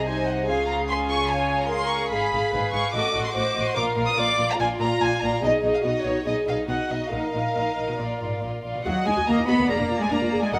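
Urgent and dramatic, this quick classical-period movement for string orchestra moves at 144 BPM in 4/4 with a rubato feel, cut from a longer piece. A dark, intimate violin section carries the melody from 0.1 s, bowed sul tasto with a smooth top, light vibrato and a soft attack, while a second violin section adds a warm second line just as close and up front. The violas fill in a shadowy accompaniment, also sul tasto with light vibrato. Beneath them, a rich cello section and a double bass section share the bass with a pure, floating quality, the double bass sitting lowest and quietest in the blend. The harmony travels from Db through diminished colours to Bb, with a turn to Ebm at 8.9 s as a new section begins, all held in a moderate recital-hall reverb.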